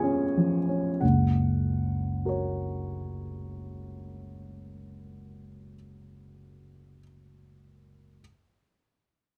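A romantic classical character piece for solo baby grand piano in F# major, this warm, lyrical fragment cut from a longer work moves in a rubato 2/4 at 48 BPM, slowing through its first second as a C#7 chord over F# resolves to F# at 1.0 seconds, with the polished, present piano sitting up front across a range of F#1 to C#6, captured by close, detailed microphones in a light reverb.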